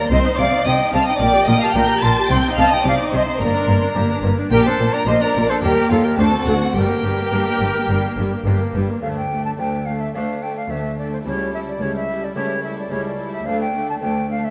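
Heard in a moderate concert-hall reverb of 2.1 seconds, this stormy, driving passage is cut from a longer baroque-style concerto movement with solo episodes. At 108 BPM in a straight 4/4, it moves in G minor before shifting to D minor at 9.0 seconds. The silver concert flute, pure with a crisp attack and heard from a distance, carries the melody most prominently alongside a close, expressive violin section. A second violin section, focused with a smooth top, traces its own line beneath them. An airy Flemish-style harpsichord with two sets of strings shares the accompaniment with the viola section, which is even and set back in the space. Underneath, the cello section sits in the background with bowed vibrato, and a dark double bass section anchors the low end until 8.8 seconds.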